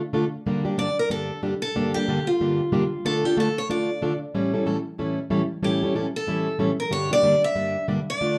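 Jazz at a brisk 186 BPM in 4/4, this short fiery cut from a longer piece swings its eighth notes with a lively, driving feel. A plugged-in steel-string acoustic guitar carries the accompaniment from 0.1 seconds, its picked parlour tone warm and up front with fresh strings ringing through chords of Gm, Dm, A7 and back to Gm. At 0.8 seconds a second steel-string acoustic guitar enters with the melody, its picked sound bright and boxy, with audible finger squeak adding a close, handmade edge. Both guitars sit forward in the mix, and their fresh-string parlour character gives the pairing an intimate sparkle. A wet club reverb with a short 0.6-second tail frames them in a dark production that keeps the heat of the playing close and immediate.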